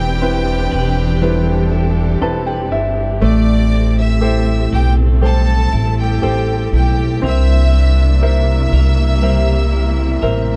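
This heartbroken, melancholic pop ballad excerpt opens at a slow 60 BPM in 4/4 with everything sounding together: a biting, intense violin section carries the melody with light vibrato over a polished concert grand piano, a smooth, expressive string section holding sustained chords with portamento, and a twangy, compressed twelve-string electric guitar picking bright arpeggios. A woody pizzicato upright bass sits up front, while the piano adds a fill between 1.7 and 3.2 seconds as the harmony moves from Cmaj7/E to Am7 and later C7. The sound is dry and close, in the manner of a small-room 1970s studio recording.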